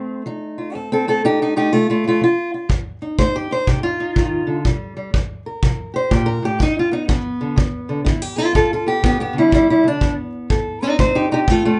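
A relaxed 4/4 pulse with a moderate swing on the eighth notes drives this laid-back, soulful slice of acoustic country blues, cut from a longer piece. A fingerpicked steel-string parlour guitar carries the melody throughout, ranging from F2 to C5 with a dark, boxy tone placed up front. At 2.7 seconds a tight, distant kick drum with a rolled-off top and a roomy small-room character joins as the only percussion, played with brushes, and it drops out at 11.6 seconds. The harmony moves from F7 to C5 and G before returning to F7 near 10.5 seconds. Light reverb and a top end that stops at 10.4 kHz give the recording a soft, intimate sound, and the guitar is tuned to A4 = 435 Hz.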